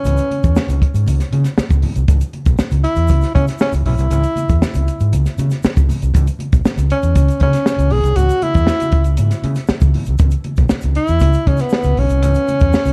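A breathy tenor saxophone opens this cool, hypnotic funk excerpt at 118 BPM in straight 4/4, joined at once by an overdriven, fingered electric bass and a grainy tube shaker. A compact cocktail drum kit enters at 0.1 seconds with a high-tuned snare, a punchy kick and hi-hat, its rolled-off top giving it a small-room intimacy. Low-tuned congas with a thick-skinned tone arrive at the same moment, sitting distant and very quiet as if in a large room, while the bright, saturated shaker stays in the background. Up front, the saxophone plays a mellow jazz-style solo line between B3 and G#4, with light vibrato, scooped notes and a touch of analog delay, over the amped bass that holds the low end from B1 to C#3. The whole passage rests on a single C# minor chord, and the dark, warm production has little reverb, keeping the sound dry and close.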